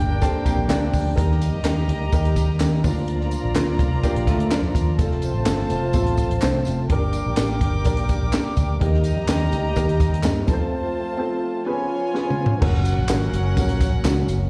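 A straight 4/4 groove at 126 BPM drives this uplifting, danceable slice of uptempo 1960s-style soul in Bb major, with a compact cocktail drum kit of punchy kick, high-tuned snare and dark cymbals beside a round, foam-muted fingered electric bass sitting up front, while tambourine, egg shaker and group handclaps add a small-room acoustic touch. A woody upright piano opens with a fill at 0.2 s as a hollow-body jazz guitar plays a clean, picked riff with slapback echo in two short bursts, the second at 4.0 s, over a reedy, gut-string chamber string section carrying a bowed second line and a very quiet, lightly overdriven tonewheel organ holding fat sustained chords through a rotary speaker. The band drops into a break at 10.7 s before a drum fill and a Db7 chord lead into the next section, all heard as a live gig through the venue's PA with recital-hall reverb.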